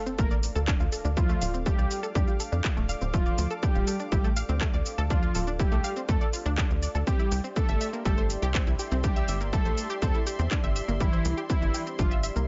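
Melancholic and hypnotic, this melodic techno passage from a longer piece moves at 122 BPM in D minor, shifting from Dm to Cadd9 at 7.1 seconds. An overdriven, up-front electronic kick and a tight, punchy sawtooth sequencer bass drive it, alongside a tape-warm house drum kit of handclaps, metallic hats and shaker, while a very quiet sub drop impact sounds under the opening 1.2 seconds. Above them, a thick detuned unison lead with vibrato and cassette-tape grit carries the melody over a fat, warbling polysynth second line, lush delayed unison pluck arpeggios and a deep, moody analog pad with chorus, all pumping against the kick in a dry mix with a muted top end.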